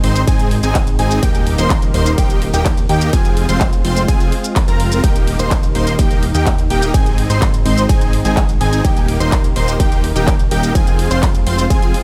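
A punchy electronic kick sits up front in straight 4/4 at 126 BPM, entering at 0.3 seconds and driving this anthemic, euphoric slice of festival progressive house in Eb major, while a layered big-room kit of handclaps, hi-hat, ride cymbal and shaker carries studio reverb beneath it. A fat, thick analog bass built from detuned sawtooth anchors the low end, pumping with the sidechain. The most prominent melodic voice is a huge, bright supersaw riff, compressed and sustained, with tape echo and the same pumping. Above it, a catchy plucky unison lead spins high arpeggios, mellow yet full-bodied, its sawtooth, square and sine layers with a sub octave and noise shaped by a filter sweep and colored by ensemble chorus and tape echo. In the background, a lush, warbling vintage pad holds sustained chords with a slow attack and long release, thickened by chorus and breathing with the sidechain, as the harmony moves through Ab, Eb and Fm in a dry, loud mix that feels cut from a longer track.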